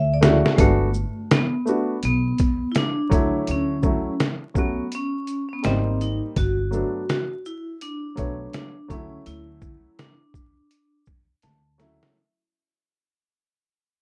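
A ringing vibraphone struck with hard mallets and shimmering with medium motor vibrato carries the melody over a clear upright piano, a woody pizzicato upright bass and a gritty, pitched-down sampler-style trip hop kit with a thumpy kick, all in a smooth jazz-hop fragment cut from a longer piece that wears light reverb, vinyl crackle and a rough home-demo mix as it fades out from 0.6 seconds and closes on a piano fill at 11.1 seconds.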